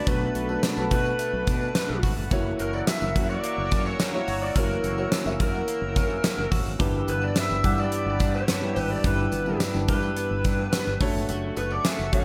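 This 1980s-style pop excerpt opens with a dark, distorted lead guitar carrying the melody over a mellow concert grand piano with deep bass, both sounding from the very start in a nostalgic, dramatic mood. A clean, direct-recorded electric guitar plays a compressed, picked riff in the background, treated with analog chorus and delay, while a bright sawtooth pad with a slow attack and filter swell holds sustained chords behind it. Within the first moments a growly fretless bass with lush chorus and a punchy gated drum kit join, the kit sitting up front with a fat snare, hi-hat and an airy stone-room ambience from its gated reverb. A very quiet, jingly tambourine adds a vintage, band-limited shimmer. The harmony moves from Bm7 to F#7, then G6, and lands on Dmaj7/F# near 11.0 seconds, all set in a light studio reverb.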